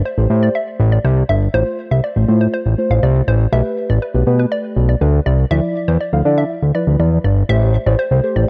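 A fat, saturated analog bass sits up front in this confident, bittersweet dance-pop excerpt at 121 BPM in A minor, alongside a hollow, warbling square pluck melody with chorus and tape echo, and deep, soft chord stabs with chorus entering at 0.2 seconds over Am7, F/A, Gadd9 and Dmadd9, all in a dark production with light digital reverb.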